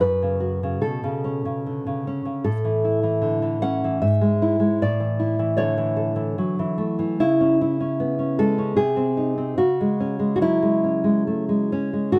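A warm, up-front nylon-string guitar sounds in a moderate studio reverb on this 12.2-second excerpt cut from a longer romantic piece for solo classical guitar. In 3/4 at 70-78 BPM with a rubato feel, the thumb-plucked guitar spans F#2 to F#5, moving from F#m through A and E/G# to C#m, and it carries a nostalgic mood.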